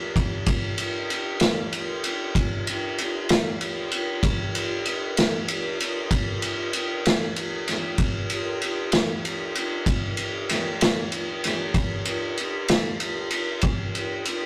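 A vintage acoustic drum kit carries this short blues excerpt on its own, sitting up front with a punchy kick, a medium-tuned snare and dark ride cymbal. The groove moves at a slow 64 BPM in 12/8, counted in dotted quarters, with a straight feel and a gritty, soulful mood. The kit has a small-room, pumping character and a rolled-off top that keeps its cymbals dusky and round. A wet stone room reverb lingers around it, and tube saturation gives the rough rehearsal-room recording a grainy edge. The drums enter at 0.2 seconds and play until 14.4 seconds, filling a single section cut from a longer piece.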